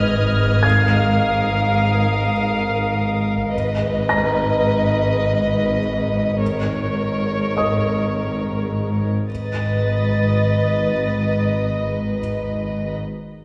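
Cinematic and unmetered, this ominous, uneasy passage is cut from a longer piece and rests on a G#m chord. Muted chamber strings play throughout, with the violin section up front carrying a veiled second line over a dark cello section heard at a distance and a double bass section anchoring the low end, all bowed con sordino with vibrato. An electronic sub drop sits in the background for the opening impact, ending by 0.6 seconds. A clear, intimate grand piano adds high texture with audible action noise until 9.3 seconds, while a studio violin section with light vibrato and a smooth top adds high texture at the start and again from 9.3 seconds. The wet scoring-stage reverb places the ensemble further back in the room, heightening the sense of unease.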